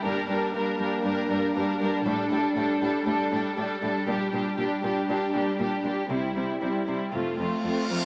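Heard through a small-speaker sound in a moderate scoring-stage reverb, this dramatic, relentless cinematic fragment in straight 4/4 sets a lush, up-front violin melody with vibrato over a focused second violin line in the background, expressive violas, mellow, tight French horns holding sustained chords, smooth, even cellos and background double basses on the bass, and a huge, bright reverse cymbal rising in at 7.3 seconds as the harmony moves from G minor toward F.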